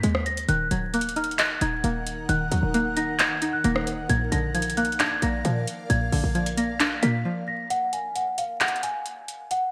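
A delicate, bell-like celesta carries the melody with digital delay over a booming analog drum machine of handclaps, metallic hats and rim clicks with gated reverb, a punchy, short 808-style bass, a twangy string-like resonator pluck with chorus and phaser, and an ethereal pad entering at 1.2 seconds, in this menacing, melancholic half-time trap excerpt at 133 BPM. The harmony moves from Ebm to Bb before the bass drops out at 7.2 seconds and a break begins at 7.3 seconds, with the pluck falling away at 7.7 seconds. It is all set in a bright 1980s-style digital production with vinyl crackle and moderate, lush hall reverb.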